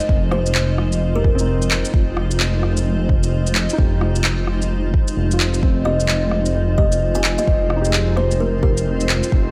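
Rainy and wistful, this future garage excerpt sits on a single Fm7 chord with a swung 16th-note feel. A grainy, blurred granular pad and a hushed felt-muted upright piano with audible action noise both pump against the deep, tape-warm kick, while a rumbling detuned saw bass sits up front and electronic shaker, rim click and handclaps fill out the groove. A woody, airy kalimba carries the melody through dub echo from 0.3 seconds and returns at 5.9 seconds, and a dreamy reversed texture joins in the background at 7.1 seconds.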